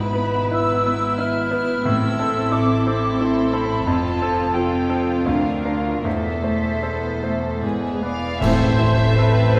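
A bright, up-front concert grand piano carries the melody of this passionate, tragic romantic fragment in triple time and rubato feel, joined by a rich, sul tasto violin section, a pure flute group and a floating second violin line over dark, woody violas, pure cellos and soft-edged double basses, with very quiet calf-headed timpani strikes at 1.8 seconds, a clear, distant oboe entering at 8.0 seconds, and a band accent at 8.4 seconds that brings in mellow French horns and trumpets, a faint tuba, and dark cymbals with concert bass drum, the ensemble heard from further back in a reverberant concert hall.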